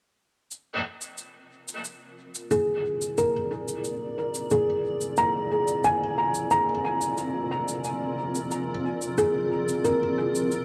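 A straight 4/4 pulse at 90 BPM sets a meditative, spacious ambient dub groove in F dorian, resting on a single Fm6 chord throughout this short excerpt cut from a longer piece. An electronic, overdriven cabasa enters at 0.5 seconds, sitting low in the mix with the gritty character of a sound re-recorded in a small room. At 1.9 seconds a granular cloud pad fades in with sustained chords between C4 and D5, its detuned unison sines blurred and evolving, full-bodied yet bright, with a slow attack, long release and its own built-in reverb. A felt-muted upright piano joins at 2.5 seconds with arpeggios from Ab4 to Bb5, sitting up front as the loudest part: soft, mellow and intimate, with thick felt, audible action noise and a vintage tone shaped by a low-pass filter, tape echo and a filter sweep. A huge ambient reverb with a 4.3-second tail surrounds the dark production, giving the whole passage a hazy, suspended depth.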